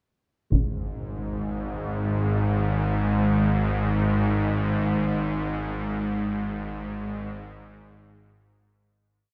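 Unsettling and cavernous, this complete dark ambient drone piece unfolds in free time, tuned to A4 = 439 Hz. A taiko ensemble opens it with a distant, heavy-stick strike between 0.5 and 0.7 seconds, its acoustic sound compressed, saturated and softened by a low-pass filter. At the same moment a bronze singing bowl begins ringing very quietly on a held high note, its dark, metallic tone beating slowly. From 1.0 seconds a string-like drone enters up front, tense, nasal and bright, with a sawtooth edge, a noise layer, warbling vibrato, slow attack and long release in its own reverb. Everything sits in a vast cathedral space with a 5.1-second reverb tail, and the whole piece fades out from 4.8 seconds to its close.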